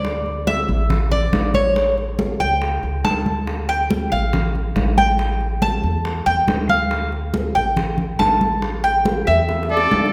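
Steeped in the lush reverb of a church or concert hall, this danceable, nostalgic fragment of Cuban son and guajira puts a metallic, picked tres up front, its double-strung arpeggios carrying the solo over a woody, thumpy gut-string upright bass. Damped, high-tuned congas played with soft hands sit close, while tight bongos struck with hard hands sound distant. A drum fill arrives at 9.5 s, and at 9.7 s a clear, wah-wah plunger-muted trumpet and a bright, vibrato-laden second trumpet break in just as the passage is cut off.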